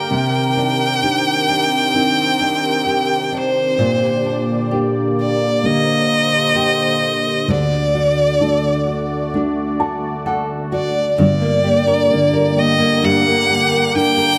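A pop ballad at 65 BPM in G harmonic minor, this melancholic, longing passage from a longer piece sets a single clear, focused violin up front, singing the melody with vibrato over a soft, boxy felt-muted upright piano and fingerpicked nylon-string guitar arpeggios of deep classical tone. A detuned, vintage sawtooth pad with slow attack, filter swell and subtle chorus holds evolving sustained chords beneath, moving through Cmadd9, Gm/Bb and D. A dark, intimate piano fill from 9.3 to 11.2 seconds leads into a new section landing on Gm, all set in a moderate recital hall reverb.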